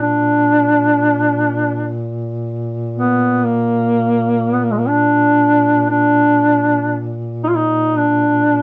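Caucasian folk in Bb major, a solemn, longing fragment in a rubato 3/4 around 57-63 BPM, in which a mellow, distant and roomy duduk carries the up-front melody between Ab3 and F4 with vibrato and scooped notes, while a dark, close-miked second duduk, also bending into its notes with vibrato, holds a low Bb2 drone beneath it for the full 8.6 seconds, all set in moderate studio reverb.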